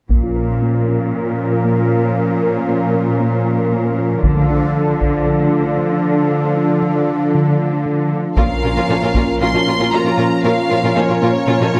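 A bold, brassy analog pad sits up front with sustained, chorused chords, opening this tense, relentless fragment of a hybrid orchestral and electronic film score. Beneath it, a smooth symphonic cello section carries the bass, while a dark, ringing harp-like synth pluck plays arpeggios in the background, touched with chorus and delay. A taiko ensemble struck with heavy sticks punches in for short bursts, the first at 0.1 seconds, as the harmony moves from B-flat minor to D minor and back. At 8.4 seconds a lush violin section enters with a focused melody, supported by a quieter second violin line and an expressive viola accompaniment with portamento. A moderate scoring stage reverb lends the ensemble a sense of space over a steady, straight four-beat pulse.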